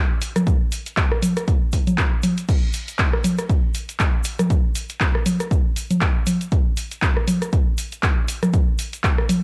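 House groove at 119 BPM in 4/4 with a 57% swing on the sixteenths, trippy and raw, where a punchy analog drum machine of congas, crash cymbal, handclaps, hi-hat and rim click sits up front beside an electronic kick drum entering at 0.5 seconds, both re-recorded in a small room, while a grainy, bright egg shaker stays close and dry in the background, all captured with little reverb on a home cassette recording cut from a longer piece.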